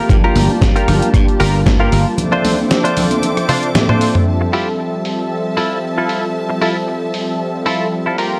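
Nu-disco at 115 BPM in F major, this groovy, feel-good excerpt rides a gently swung 4/4 pulse, cut from a longer piece. A twangy, clean electric guitar sits up front with a picked, scooped riff through analog chorus and a low-pass filter, while a smooth, detuned sawtooth pad with soft attack and long release fills in chords with chorus, analog delay and sidechain pumping. Beneath them, a lush bowed string section holds sustained chords with vibrato, also pumping to the sidechain, as the harmony moves from Gm7 to Dm7 and settles on Fmaj7 at 4.3 seconds. A growly, punchy slap bass and a thumpy, gritty electronic kick anchor only the opening two seconds, and distant congas and bongos in a large room add bright acoustic color until 3.9 seconds. A dusty, sampler-style soul kit with filtered hats, rim click, a medium-tuned snare and toms plays throughout, delivering a drum fill from 3.5 to 4.3 seconds into the second section. 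The overall sound is dry and gritty, with the feel of a hardware recording.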